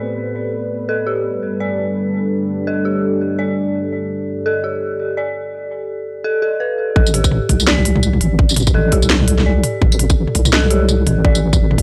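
A gritty, dry hardware recording with a cassette-tape haze and light reverb opens on a dark, cinematic half-time drum and bass passage in A minor at 168 BPM, cut from a longer piece. A moody, detuned sawtooth pad holds sustained chords with chorus and sidechain pumping, moving from Amadd9 to G before it stops at 6.2 seconds. Over it, an eerie, inharmonic FM bell spins arpeggios through chorus, phaser, analog delay and the grit of a vintage 12-bit sampler, carrying on to the end. The drop lands at 7.0 seconds on A minor, bringing in a deep, soft wobble bass built from square and sine tones, along with a tight, tape-warm electronic kick in studio reverb. A split second later the layered kit joins with a cracking snare, crisp hats, tambourine and toms, swinging its sixteenths in a spacious half-time groove.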